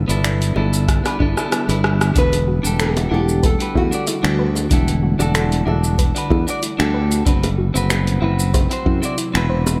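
A bright, growly fingered electric bass sits up front in this wistful, smooth sunset chillout excerpt in E minor at 94 BPM, moving through G6, Em11 and D13/F# chords beneath an ethereal, airy pad and a soft, round synth pluck playing arpeggios with chorus and delay. A clean, compressed electric guitar with vintage 12-bit sampler grit adds accompaniment, while a layered, tape-warm deep house kit of finger snaps, hi-hat, rim click and shaker, tight high-tuned bongos in the background and a deep electronic kick set a swung groove, the kick briefly dropping out during an early drum fill. A fingerpicked nylon-string guitar carries the melody from 2.2 to 6.9 seconds, in a bright 1980s-style digital production with light reverb.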